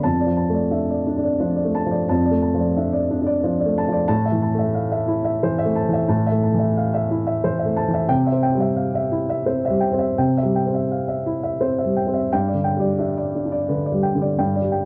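A lone upright piano opens the recording, its dark, woody tone sitting up front in a mellow, natural sound with short sustain. The music is neoclassical minimalist piano in 3/4 at 88 BPM, played with a rubato feel that gives it a wistful, reflective mood. Spanning from F2 to A5, the piano moves through Dm/F, Am and C before arriving on G at 12.3 seconds, where the opening section begins again. Light reverb surrounds the instrument, and the overall production is dark and warm. The passage is cut from a longer piece and ends at 14.9 seconds.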